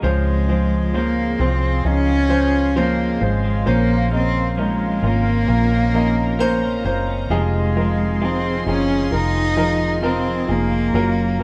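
Hopeful and heartfelt, this short pop fragment moves at an unhurried, straight pace through Dbmaj7, Bbmadd9 and Fm7 chords. A single cello carries the melody up front from 0.1 seconds, bowed sul tasto with a soft attack, airy bowing and light vibrato that feels close and intimate. Beneath it, a clear grand piano plays accompaniment with short sustain and audible action noise, while a dark, round, foam-muted vintage electric bass sits punchy and amped near the front. A clean, compressed twelve-string electric guitar picks arpeggios in the background, and a bright, evolving synth pad built from detuned sawtooth, triangle and sine layers with a sub octave holds sustained chords through a chorus effect, slow attack, filter swell and long release. Light reverb gives the whole group the natural feel of a band playing live in one room.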